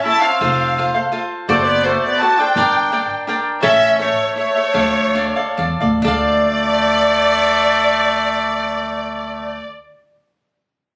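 Proud and festive, this short mariachi-flavored Mexican folk cut in 3/4 moves between 124 and 170 BPM in D harmonic minor, easing into a slowdown from 3.6 to 6.0 seconds as the chords pass from F through D7/F# and Gm to A and Dm. A lush, dark violin section bowed with expressive vibrato carries the melody up front under plate reverb, while a distant, roomy trumpet plays a classical-style second line and a crisp, picked cavaquinho supplies accompaniment. A woody pizzicato upright bass enters at 0.4 seconds, and the whole is heard through phone-captured club ambience with compression.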